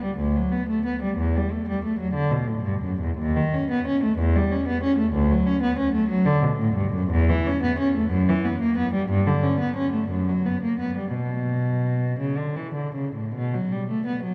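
Bathed in a cathedral reverb with a 4.8 s decay, this classical, baroque-style suite movement for unaccompanied cello, cut from a longer piece, has a dark, warm production. A single bowed cello sits up front in period style, its dark gut-string tone reedy yet smooth at the top as it ranges from D2 to C#4 across the full 14.3 seconds. The music moves in a rubato 6/8 at roughly 49-64 BPM in dotted quarters, settling into B minor from 5.1 s with a flowing, radiant feel.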